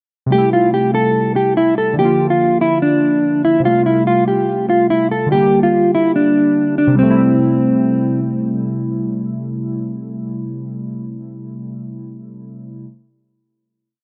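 A clean, fingered electric guitar and warbling, detuned lo-fi synth keys open together at 0.3 seconds, the guitar carrying a dark, looping melody up front while the keys hold open-voiced chords through Am7, Bb, Fadd9 and Gm, both repeating like a sampled loop. This brooding half-time trap beat sits at 144 BPM in A phrygian, with a low-pass filter and digital delay on the guitar and chorus and a filter sweep on the nostalgic, decaying keys, all in a light reverb. The breakdown settles onto a final Am7 at 7.0 seconds; the guitar stops at 8.2 seconds and the keys ring on alone until 12.8 seconds.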